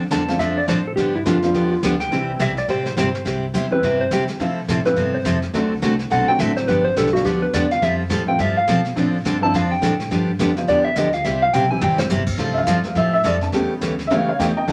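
A bright, picked dreadnought acoustic guitar and a woody, thumpy pizzicato upright bass set off this playful, cheerful western swing excerpt, with dark, compressed lap steel volume swells leading briefly until 3.3 seconds over airy brushed drums and a jangly, detuned honky-tonk piano, before a round, gentle FM synth lead with chorus takes the up-front melody from 3.7 seconds, a drum fill arrives near the close of its solo, and the boxy piano steps forward for its own solo at 12.4 seconds, all in a small, reverberant club sound.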